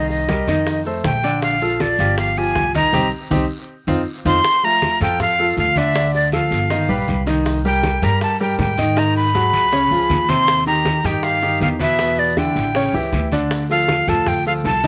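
A straight, danceable 4/4 groove of low-tuned congas, tight high bongos, grainy distant maracas and raspy guiro drives this sunny Afro-Cuban jazz excerpt, with woody, growly pizzicato upright bass underneath, brilliant baby grand piano accompanying up front, and a breathy, crisp flute melody with vibrato and slapback echo riding on top, while a band accent at 2.9 seconds and a drum fill lead into the next section at 4.4 seconds.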